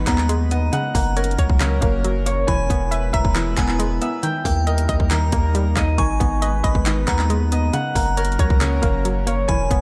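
Trap hip hop with a menacing, hard-hitting half-time feel, where an up-front, overdriven trap kit of hard-clipped kick, sparkling hats and handclaps and a deep, long 808-style bass sit beneath a ringing, fingerpicked concert harp playing arpeggios, a hollow, nasal square pluck with chorus, a glassy FM bell line with digital delay, and a soft, breathy pad holding sustained chords in the background over a dark minor progression, all with little reverb and some lossy compression artefacts in this short excerpt.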